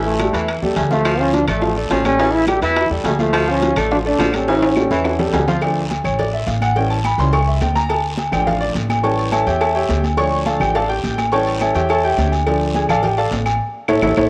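Fiery and passionate, this salsa excerpt at 210 BPM in D harmonic minor sets a clear trombone melody over a distant baritone saxophone second line, both carrying a cassette-tape tint, until they stop near 5.5 seconds and the worn, up-front grand piano takes a solo over the A7 and Dm changes, backed by thumpy gut-string upright bass, bright high-tuned congas, round bongos and cowbell, woody claves, raspy guiro, ringing timbales and agogo bells, drum fills, and a closing band accent at 13.6 seconds in a light-reverb home cassette recording.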